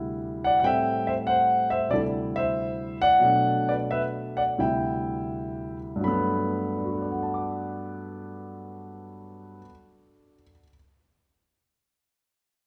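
Relaxed and playful, this brief solo jazz passage is cut from a longer piece and moves in a swung 4/4 at roughly 81-95 BPM in G major. A lone grand piano carries everything, spanning a broad range from low D2 up to D6, and its tone is intimate and natural, with long sustain and the soft mechanical noise of the action audible up front. The harmony circles through suspended and minor-seventh colors, returning to D9sus4 between Am7 and Bm7 before settling onto a Gmaj9 at 6.0 seconds. The tempo slows from about 0.6 seconds to 6.0 seconds, easing the phrase toward that resolution. The piano sits in a recital hall or church acoustic whose reverb lingers for around 1.4 seconds, wrapping the close, detailed instrument in a glowing, spacious halo.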